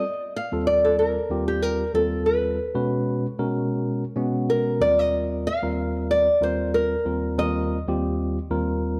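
A wet, large studio reverb with a 1.3-second decay surrounds this short jazz cut from a longer piece, and both instruments sit up front in the mix. The mood is funky and slick, with a light swing on the sixteenth notes in 4/4. A small, warm nylon-string guitar carries the melody, fingerpicked in an acoustic voice across its upper-middle range. Beneath it, a bright tine electric piano plays a clean accompaniment heard through its built-in speakers, reaching from the low bass register up toward the guitar. Both parts play throughout the 9 seconds, moving from Ebadd9 to Bsus2 at 2.6 seconds and back to Ebadd9 at 4.8 seconds.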